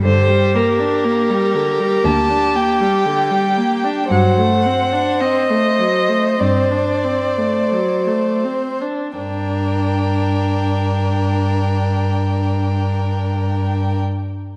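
A bowed cello sits up front with a rich, vibrato-laden tone, entering at 0.1 s to anchor the bass of this slow, melancholic string quartet movement in G minor. Above it, a single violin carries the melody in a smooth, even line that sounds somewhat distant, while a second violin, clear and close, traces a quieter line beneath it. The viola, close and up front, supplies a steady accompaniment with its own vibrato. The music moves in a free, rubato 4/4 at roughly 40-60 BPM, slowing down through the opening until a new section begins at 9.2 s, as the harmony passes from G minor to D7 over a G bass and then returns to G minor. A moderate scoring-stage reverb and a dark production lend the passage a solemn, enveloping atmosphere, and the recording is cut from a longer piece.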